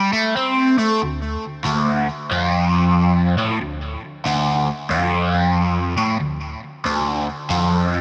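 A dark, overdriven electric guitar opens this short rock fragment alone, playing a picked solo line that runs across the full 8.0 seconds. The mood is raunchy and swaggering, set at 92 BPM in 4/4 with a 65% swing on the eighth notes. The guitar is double-tracked and compressed, sitting up front in the mix, and a phaser and digital delay color its tone. Its part moves between D2 and C4. A brief opening phrase gives way at 1.0 seconds to a longer passage that carries through to the end. The whole piece sits in light reverb with a digital sense of ambience, and it feels lifted from a longer performance.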